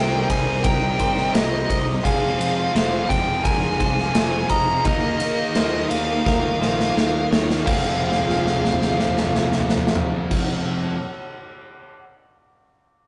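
A rough rehearsal-room recording with tube saturation, a wet studio ambience and a dulled top end frames this brooding, dreamy slice of shoegaze-tinged rock, cut from a longer piece. Up front, a big acoustic drum kit with a punchy kick, medium-tuned snare, toms, and bright crash and ride cymbals drives a straight 4/4, with fills at 6.3 seconds and again from 8.0 seconds as the music moves from Cm7 through Fm and Ebsus2 back to Fm. A nasal, overdriven lead guitar through a parked wah carries the melody over a shimmering, warbling vintage string machine of sawtooth violins whose soft-attack chords are coloured by phaser and ensemble chorus. Three riffing guitars stack beneath: a very quiet crunchy overdriven part, a very quiet dark fuzz part, and a tight, bright, double-tracked distorted part sitting back in the mix. A scooped clean electric guitar picks arpeggios in the background, while a growly picked electric bass anchors the low end. 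The drums ring on alone after the other parts stop, closing at 11.9 seconds.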